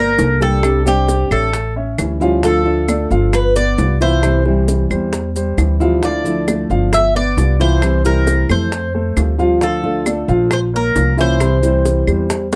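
A metallic, double-strung Cuban tres carries the melody up front from the first beat over a dark grand piano's mellow arpeggios and a thumpy, gut-strung pizzicato upright bass, with a thumb-plucked classical nylon-string guitar adding accompaniment from 0.2 seconds alongside grainy maracas and tight, high-tuned bongos set in the background, and woody claves joining at 0.6 seconds, giving this relaxed, danceable Cuban son and guajira passage, cut from a longer piece, a straight 4/4 pulse at 134 BPM through chords moving from Gmadd9 to C, captured by close, detailed microphones in light reverb.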